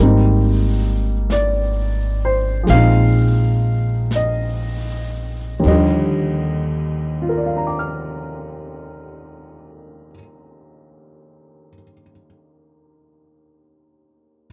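A woody upright piano with audible action noise sits up front, carrying the harmony from Abmaj7 through Bb9sus4 to Ebmaj7 in this intimate, late-night jazz fragment in Eb major, swung at a very slow 38-46 BPM and slowing down over the opening 5.6 seconds. Pizzicato upright bass with steel strings sits close alongside it until 10.1 seconds, while a brushed drum kit with dark cymbals, a medium-tuned snare and a boomy kick appears briefly and softly from 1.3 to 6.4 seconds. The dry, close 1970s-style studio sound carries a small room ambience, and the piano continues alone to the end at 14.5 seconds.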